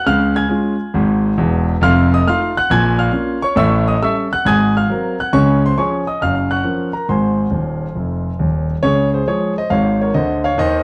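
A dry, close 1970s-style studio sound frames this brief, playful stride-piano excerpt in Db major at 136 BPM with a swinging 4/4 feel, where a clear, intimate grand piano, up front with audible action noise and a touch of slapback echo, plays solo from Eb1 to Ab6 through changes such as F7, Bbm, A7 and Gbmaj7 before a fill at 7.5 seconds leads back to Db at 8.8 seconds.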